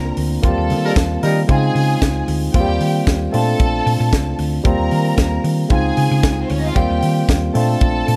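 Joyful and danceable, this short disco excerpt rides a straight feel in a dry, close-sounding studio. A tight funk drum kit joins at 0.2 seconds, its high-tuned snare and snappy kick sitting up front with a natural small-room character. A dark, round hollow-body bass, fingered and amped, punches out the low end beneath a bright, barky tine electric piano that comps cleanly through a combo amp near the front of the mix. Behind them, a lush bowed string section adds a focused second line with vibrato from a distance. A horn section blows pop-style stabs with light vibrato from 0.8 to 1.4 seconds, part of a band accent early on. The harmony cycles through Eb6, Dbmaj7 and Bbmaj9, giving the groove a glossy, sophisticated lift.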